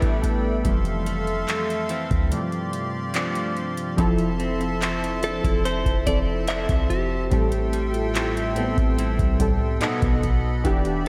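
A dreamy, reverb-soaked hall sound frames this moody, late-night contemporary R&B excerpt at 72 BPM, where round, detuned analog keys with chorus carry the accompaniment over a deep, boomy 808-style bass and a booming analog drum machine with metallic hats and handclaps, while reedy accordion chords pump softly above, a picked, compressed clean electric guitar arpeggiates through tape echo in the background, and a second clean guitar takes a brief melody from 5.2 to 8.5 seconds as the chords move from A9sus4 through Fmaj7 and Am7 to B7.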